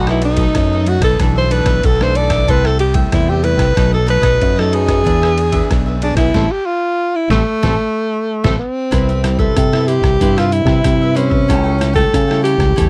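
A breathy, whispered alto saxophone carries the melody up front in an intimate jazz style, over crisp picked cavaquinho, fingerpicked classical nylon-string guitar in the background, and a growly fingered electric bass run through an envelope filter, in a nostalgic, bittersweet blend of samba and choro. A gritty, pitched-down trip hop sampler-style drum kit enters at 0.1 seconds with a thumpy kick, medium-tuned snare, hi-hat, ride and rim clicks, tape-warm and compressed. After a band accent from 6.4 seconds, near the end of which the kick and snare drop out at 8.3 seconds, the music moves into a new section at 8.9 seconds, all captured as a dry, close 1970s-style studio recording cut from a longer piece.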